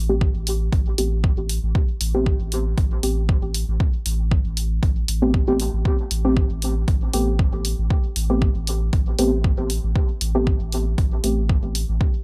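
A round, sine-toned sub bass opens this hazy dub techno excerpt at 117 BPM in A minor, joined by a nasal, dark chord stab plucking a decaying Am9 with chorus, phaser and dub echo, both pumping under sidechain, while an up-front electronic kick and a lighter hi-hat, each re-recorded in a small room, drive a gently swung 4/4 through a digital ambience.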